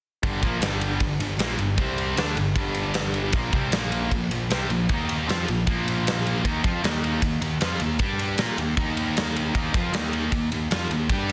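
Opening at 0.2 s and running to 11.3 s, this aggressive, menacing hard rock clip at 155 BPM drives a straight 4/4 with a distorted electric guitar riffing in the background alongside a scooped high-gain guitar, a fuzzy, overdriven picked bass and an up-front big rock drum kit of punchy kick, ride and a medium-tuned snare with soft clipping in a bright stone room, moving from Gm through power chords on C, G, Bb and Eb under light reverb and a dense, heavily limited modern master.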